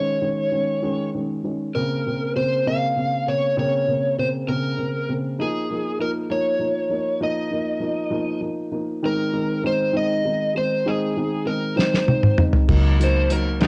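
Heartfelt and romantic, this slow six-eight pop ballad at 66 BPM, cut from a longer piece and recorded at home on cassette with a wet studio reverb, sets an overdriven slide guitar melody over a dark, woody upright piano with audible action noise, until a damped 70s drum kit with a fat snare and gritty sampler texture enters with a fill at 11.8 seconds and a round, foam-muted electric bass joins at 12.7 seconds.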